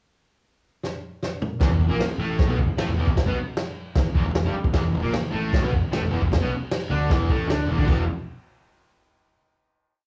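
A vintage drum kit opens this raw, menacing garage rock piece in E minor at 153 BPM with a fill at 0.8 seconds, its dark cymbals and punchy kick driving a stomping groove up front. At 1.6 seconds a double-tracked fuzz guitar, carrying the same cassette-tape grit as the drums, plays an octave riff on E5, and a growly, overdriven fingered bass doubles it in quarter notes. The piece has the small-room feel of a home cassette recording and closes on a final chord ringing to 9.4 seconds.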